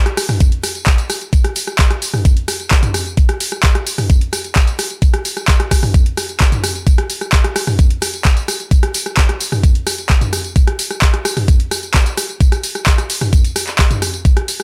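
Hypnotic and gritty, this short house excerpt moves at 130 BPM in a straight 4/4, built entirely from percussion with little reverb. A punchy analog drum machine, overdriven and re-recorded in a large room, supplies handclaps, hi-hat, rim click, tambourine and toms from 0.1 seconds, while a thumpy, sampler-style electronic kick, re-recorded in a small room, enters at 0.4 seconds and sits louder and up front.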